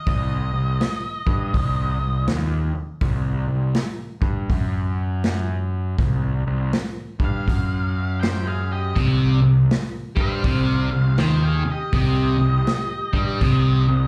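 A swung 4/4 groove from a vintage drum kit with a punchy kick and rolled-off top drives this heavy, gritty blues rock and southern rock excerpt, where a bright, overdriven fuzz bass holds the low end up front, a dark octave-fuzz lead guitar with plate reverb and slapback echo states the melody briefly before returning at 7.2 seconds, a twangy, slightly broken-up second lead guitar adds a line from 8.2 seconds, and a double-tracked overdriven guitar riff joins at 9.0 seconds, all captured as a live gig through the venue's PA with club reverb.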